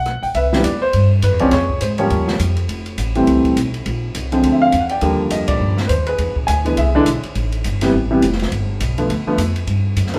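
Warm and swinging, this fast jazz piano trio excerpt moves at 206 BPM in C major with a lively swing feel, heard from further back in a club-like room with a short, wet reverb. A clear, present grand piano carries the melody up front with long sustain and plate reverb, while a woody, thumpy pizzicato upright bass sits close beneath it and an open acoustic drum kit with dark cymbals, a boomy kick and a medium-tuned snare keeps time on ride, hi-hat and rim clicks. The chords travel from Cmaj7 through Eb9, Fmaj7 and Ebmaj7 to a dominant run of E7, A7 and G7, with a full-band accent at 5.5 seconds before landing on Gmaj7.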